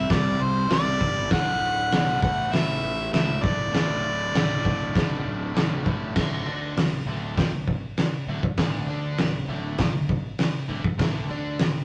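Garage rock with a rowdy, swaggering strut, this short cut opens on a clear, punchy harmonica melody up front that drops out at 5.5 seconds, while a biting, double-tracked overdriven guitar riff runs throughout. Underneath, a growly fuzz bass and an oversized, low-tuned drum kit with a fat snare, punchy kick and dark, muffled cymbals drive things along. The rough rehearsal-room sound carries tube saturation, cassette-tape grit and a small room's reverb.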